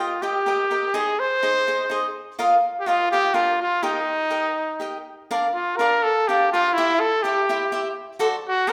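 A bright, classical-style trumpet carries the melody up front with a light vibrato, while a crisp, picked acoustic cavaquinho plays the accompaniment close beside it. This festive, romantic mariachi passage moves in a flexible, rubato three-beat feel, shifting its harmony toward new ground at 5.3 s before closing on a D7 chord. The band plays live together in a large studio with a lush, reverberant sound, and the passage is cut from a longer piece.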